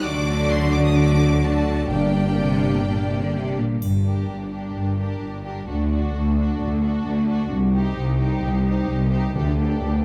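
Heroic adventure film score in G harmonic minor at 129 BPM, determined and adventurous, where a rich, focused violin section carries the melody over a smooth second violin line and lush viola accompaniment, mellow French horns hold background chords until 3.6 s, close cellos and up-front double basses anchor the bass, round soft-mallet timpani strike briefly near 1.9 s and again at 9.4 s, and a very quiet triangle with dark cymbals enters at 3.8 s, all set in a moderate scoring-stage reverb as the harmony moves from D through Gm and Cm to a closing Dsus4 in this section cut from a longer piece.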